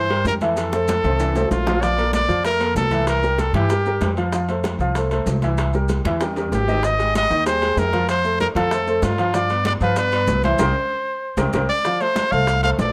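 A clear, punchy trumpet leads this joyful, danceable salsa with light vibrato, dropping out at 4.1 seconds and returning at 6.5 seconds. Beneath it, a woody upright piano plays through chords that move through Abmaj7 and G7, and a thumpy pizzicato upright bass sits up front. Thick-skinned congas with hard hands, tight high-tuned bongos, distant ringing timbales and grainy maracas fill out the groove, with drum fills and a band accent at 10.6 seconds before the music settles on F.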